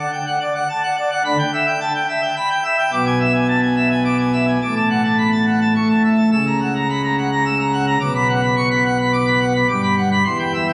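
Captured on a phone in a church with a long, wet reverb and a murmur of club ambience, this majestic classical organ toccata fragment in triple time features a solo pipe organ on full plenum with glittering mixtures and a romantic voicing, sitting up front and brilliant as it ranges from deep bass notes to high treble.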